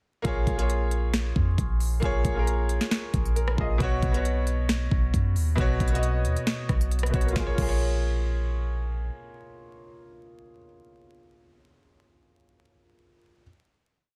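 At 0.2 seconds, a short, eerie trap piece in Bb phrygian arrives all at once at a half-time 135 BPM: a vintage-sounding concert grand piano, a deep 808-style bass and an overdriven trap kit. The piano supplies rhythmic chords in a spread voicing, repeated like a sampled loop and moving from Bbm7 to Bsus2, with a brief fill near 3.1 seconds. The 808 holds long, boomy sine sub-bass notes that follow the kick and glide between pitches. The electronic kit sits up front with a knocking kick, sharp snare, crisp hats with fast rolls, rim clicks and crash, sounding re-recorded in a small room. The drums drop out by 7.7 seconds and the bass by 9.1, leaving the smooth piano alone to let the final Bbm7 chord ring. The dry, dense and heavily limited master carries a layer of vinyl crackle that adds to its hard-hitting character.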